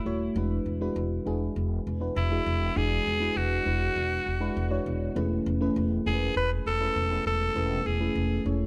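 Light reverb and a small-room ambience frame this nostalgic, romantic 1980s-style pop excerpt at 100 BPM, where a raspy, gritty tenor saxophone carries the melody up front with light vibrato over a mellow FM electric piano, soft and dark with chorus and phaser, and a woody pizzicato upright bass that enters at 0.1 seconds, as the harmony shifts from E9 to Amaj9/E at 5.2 seconds.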